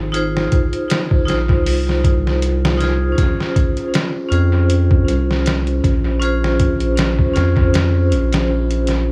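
A swung 16th-note groove at 79 BPM in 4/4 comes from a pitched-down, muffled sampler-style drum kit with a thumpy kick and medium-tuned snare, entering at 0.1 s with studio reverb and analog delay. This short cinematic, hypnotic trip hop excerpt in Bb minor moves from Fm7 to Bbm7 at 3.2 s over a round, wave-folded analog bass. Up front, a metallic, ringing hard-mallet vibraphone with fast motor vibrato carries tremolo, 12-bit sampler grit and tape echo in an echo-heavy small-room mix.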